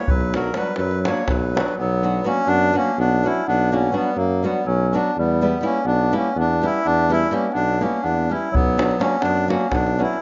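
A reedy, close-miked accordion carries the melody up front, its dry tuning giving this fiery, virtuosic Balkan wedding-band fragment its sharp edge. Beneath it, a vintage-toned clarinet in classical style plays a second line, while a fingerpicked flamenco guitar adds acoustic accompaniment, its finger squeaks audible in the texture. A warm, up-front tuba anchors the bass in a classical manner as the harmony moves from B minor to E minor at 5.2 seconds and back to B minor at 8.5 seconds, all in a driving 7/8 with a straight feel. A tight davul, recorded in a live room, marks the opening until 1.7 seconds and returns at 8.5 seconds. The rough home-demo mix has a dull top end and sits in a moderate, lush hall reverb, and the piece is cut from a longer performance.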